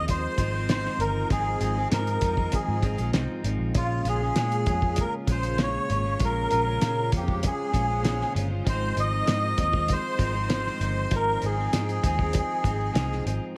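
A straight 4/4 groove at 98 BPM from a cloth-damped, thuddy drum kit with a fat snare, tight kick and muffled top anchors this dreamy, laid-back indie bedroom-pop fragment in Ab major, where a round, foam-muted vintage picked bass sits under a bright, twangy direct-recorded clean guitar with subtle chorus and warbly pitch drift, a sawtooth string-machine cello pad with slow attack and ensemble chorus hangs in the background, and an up-front reedy, breathy melodica carries the melody through ensemble chorus and tape echo over Ab6 and Bbm7 chords in a small, lightly reverberant room.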